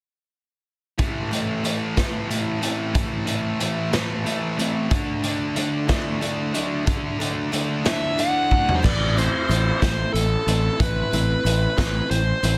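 Angsty and dark, this cut from a longer quiet-loud alternative rock piece rolls along in a heavy, straight 6/8 over brooding Amadd9 and Dadd9 chords. A picked steel-string acoustic guitar plays arpeggios in the background with slapback echo and an auditorium-like space, while a bright, double-tracked fuzz guitar plays a compressed, distorted riff up front. A raw garage drum kit, with its boomy kick, medium-tuned snare, gritty saturation and rolled-off top, pumps in a small room and plays a fill at 8.5 seconds. A dark, bluesy overdriven lead guitar with slapback echo takes up the melody from 7.9 seconds. At 8.8 seconds the fuzz riff drops out and a growly fingered electric bass with fuzz and overdrive holds a low A beneath the acoustic guitar, drums and lead. The mix carries light reverb and a dense, heavily limited modern master.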